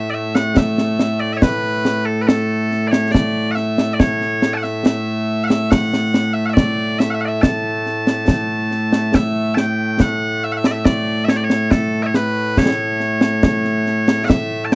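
Scottish traditional pipe music in 3/4, proud and ceremonial in mood, in which loud bagpipes carry the melody from the very start with a bright, piercing, continuous tone that sits up front. Concert snare and bass drum join at 0.4 s, acoustic, close and dry, their dark cymbals sitting up front alongside the pipes, and the tune moves into a new section at 9.1 s. The dry, close sound of a small 1970s-style studio room frames this short excerpt cut from a longer piece.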